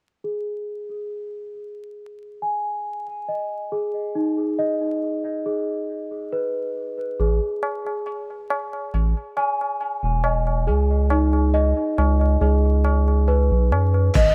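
Smoky, melancholic trip hop cut from a longer piece, opening with a delicate, bell-like celesta playing filtered arpeggios through an analog delay over a G#m/D# chord and then C#sus2. At 7.2 seconds a round, deep analog bass and a low-tuned, dry tabla with tape echo enter, and at 14.1 seconds a crunchy, gritty breakbeat kit of kick, hi-hat and crash cymbal arrives just before a pure, breathy sine lead with chorus and cassette-tape colour touches a single note. The echo-heavy mix carries light reverb, studio ambience and vinyl crackle.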